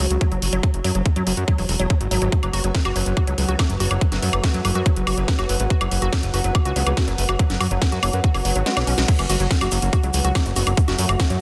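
A tight, overdriven electronic kick pushes this intense, driving psychedelic trance excerpt alongside a fat, detuned sawtooth bass, a drum and bass kit with cracking snare, bright hats, crash and woodblock, a woody wave-folded pluck riff with dub echo, a pulsing gated chord texture and a warbling, nostalgic tape-like pad, while a very quiet formant-sweep wobble bass joins at 3.4 s, the kick drops out under a drum fill and electronic swell, and a grainy tube shaker arrives with the drop at 9.1 s in a dense, heavily limited mix.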